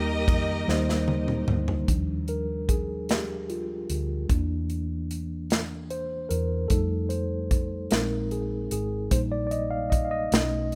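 A dry, rough home-demo sound frames this short cut from a slow, soulful and reverent gospel piece in 6/8 and Eb major, moving at 50 dotted-quarter beats per minute. A clear, lush bowed string section carries the melody only until 1.5 seconds, while a mellow tine electric piano, heard through its built-in speakers and placed up front, plays throughout and takes a solo from 1.9 seconds over chords from Ebmaj7 through C9/E, F7 and Bb9sus4 to Eb/Bb. Beneath it, a dark, round hollow-body short-scale bass holds the low end, and an acoustic studio drum kit with bright cymbals and a punchy kick enters at 0.3 seconds and plays a fill leading into the solo.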